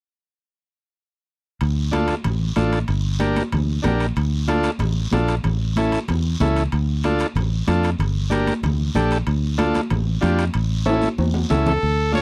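A buzzy, vintage combo organ sits up front in this passionate, danceable cumbia excerpt, playing accompaniment from 1.9 seconds in a straight 4/4 at 188 BPM in D harmonic minor. Beneath it, a dark, round fingered electric bass with a foam-muted, direct-and-amped tone anchors a cycle of Dm, Gm, Dm and A. The percussion bed gathers a raspy guiro heard at a distance in a large room, high-tuned congas struck with hard hands in the background, and ringing metal-shell timbales with a compressed, saturated edge. A drum fill arrives at 10.9 seconds, and a brilliant, close-miked pop-style trumpet enters as a solo melody at 11.7 seconds, just before the cut. The sound is a dry, close 1970s-style studio recording with little reverb.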